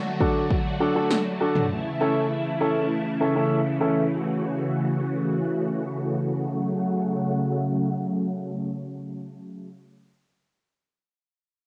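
Synth-pop in F# minor at 100 BPM, melancholic and cool, cut from a longer piece, where a shimmering, sawtooth string machine holds chorused, tape-softened violin chords throughout while a warm, long-sustaining baby grand piano accompanies until 4.0 seconds and punchy electronic pad drums with a gated snare and toms appear only briefly near the start, all over a filter sweep running through the first 6.5 seconds and a D to A progression that settles on F#m at 6.5 seconds, in a lo-fi home cassette sound with moderate room reverb.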